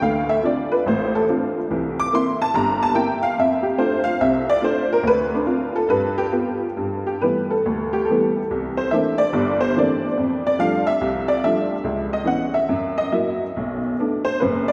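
A detuned, jangly honky-tonk upright piano carries this solo jazz piece alone from 0.0 to 14.7 seconds, its woody, boxy tone sitting up front with a vintage character. The mood is sophisticated and relaxed, set at 142 BPM in 4/4 with a swung eighth-note feel and a rubato touch. The playing spans a broad range from F#1 up to D6, moving through extended harmonies such as Dm7, F6, G69, C13 and C#m11. The key shifts from C major to G major at 6.8 seconds, where a second section begins on the same material. A cathedral reverb with a long 4.3-second decay surrounds the piano, giving the sense of a church or concert hall, and the clip is cut from a longer piece.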